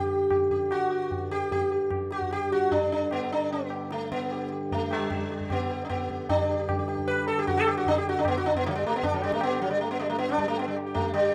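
A rough home-demo recording in a small room with light reverb captures this radiant, devotional Hindustani classical excerpt in raga hamsadhwani on G at 152 BPM, speeding up throughout, where a buzzing, shimmering, plectrum-plucked sitar with sympathetic strings sits up front over a reedy, breathing harmonium drone, while high-tuned, short-ringing tabla joins at 0.3 s and the music moves into a new section at 6.3 s.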